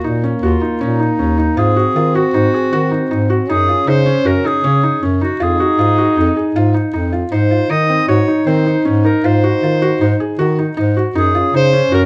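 Close, detailed microphones and a light reverb give this short chamber excerpt an intimate, finely etched sound. It is a contemporary instrumental in an uneven 5/4 with a straight feel, and its mood is pensive yet urgent. A warm clarinet carries the melody with a distant, roomy, classical tone, while a vintage-sounding French horn plays a second line beneath it. A felt-muted upright piano spins soft arpeggios with thin felt and audible action noise, and an up-front bass clarinet anchors the bass with a mellow subtone, light vibrato and scooped, jazz-style notes. All four parts play together throughout, over a harmony that moves from Eb7(no3) through Ab7, Gbsus2, Fm7 and Ab7 again before returning to Gbsus2 at 11.2 seconds.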